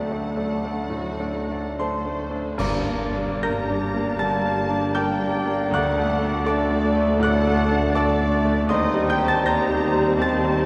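A long, wet cathedral reverb fills a church or concert hall around this brooding, tragic passage of a romantic movement for piano and orchestra, cut from a longer piece in G minor with a rubato 4/4 pulse drifting between 67 and 82 BPM. Up front, a clear, polished concert grand carries the melody across a broad span with deep bass and audible action noise, joined on the melody by a muted, con sordino violin section while a second, veiled violin section sits in the background on a supporting line. An airy, hollow flute and a soft clarinet add very quiet second lines, and a mellow bassoon, a very quiet viola section, gentle French horn chords, a dark, very quiet cello section and a dark double bass section fill out the accompaniment and bass beneath a very quiet timpani heard in a small room. At 2.6 s the harmony moves from D to G minor with an accent from the full band, as a punchy but distant trumpet section brings stabs, a mellow tuba deepens the bass, and clash cymbals with concert bass drum ring briefly until 4.2 s. 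The timpani falls away at 6.8 s, and the passage moves back to D before settling on C minor over E-flat, its mood heavy and unresolved.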